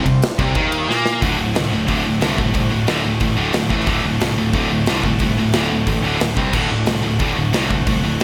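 This heavy, epic metal excerpt opens with a very quiet chamber string section holding rich, reedy, gut-string chords beneath three distorted electric guitars and a growly, fuzz-laden picked bass, all riffing together at 180 BPM in a straight 4/4. A big acoustic rock kit enters at 0.1 seconds, sitting up front with a punchy kick, a medium-tuned snare, bright cymbals and gated reverb. After a drum fill from 0.9 seconds, the strings drop out at 1.2 seconds and the guitars and bass drive on through a riff moving among C5, D and A5 power-chord harmony. The scooped high-gain guitar leads the guitar wall, while a double-tracked high-gain guitar and a tight distorted guitar sit further back. Light studio reverb and a bright 1980s-style digital production frame the whole band.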